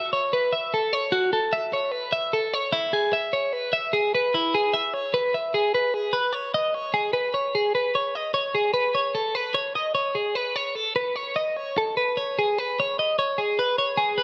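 A straight 4/4 pulse at 149 BPM drives this brief, playful rock fragment, cut from a longer piece and lasting about 14 seconds. A lone twelve-string electric guitar carries everything as a solo, picked cleanly in a bright register between E4 and E5. Its tone is warm and compressed, sitting up front in the mix with a touch of spring reverb adding a springy shimmer. The passage falls into two parts, with the second beginning at 5.9 seconds and running to the close. A light room ambience surrounds the guitar, keeping the sound open and lively.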